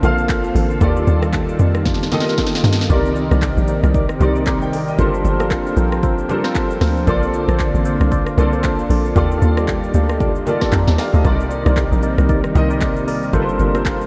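A punchy log drum bass sits up front in this soulful, hypnotic amapiano piece, its tight, percussive FM tone carrying a noise layer and a fast attack that then decays. Beneath it, an electronic afro-pop drum kit with a deep kick, sharp snare, metallic hats, handclaps, rim click and shaker is roughened by vintage 12-bit sampler grit, with a drum fill from 1.9 to 2.9 seconds, while very quiet acoustic bongos and congas ring in a small room. An intimate concert grand piano, natural and long-sustaining with audible action noise and a deep low end, plays accompaniment through an ensemble chorus. A lush, thick unison pad of detuned sawtooth and square waves holds sustained chords in the background, warbling with chorus and pumping from sidechain compression. From 2.9 seconds a dark, hollow organ stab joins, its sine-and-triangle tone treated with chorus and tape echo, as the harmony moves through rich chords such as Bbmaj9, Ebmaj9#11, Cm9 and Gm11. 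The whole mix is steeped in a long cathedral reverb that gives it a dreamy quality.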